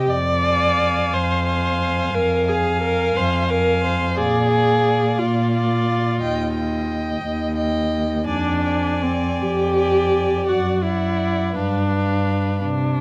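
Closely miked with light reverb, this solemn, melancholic excerpt from a slow romantic string quartet movement in 12/8 unfolds with rubato as a con sordino first violin sings a veiled, smooth-topped melody with vibrato and portamento over a distant second violin line, while the muted viola's accompaniment and the dark cello bass, touched with light vibrato and portamento, sit up front through harmonies that move from Fm to G7 at 11.5 seconds.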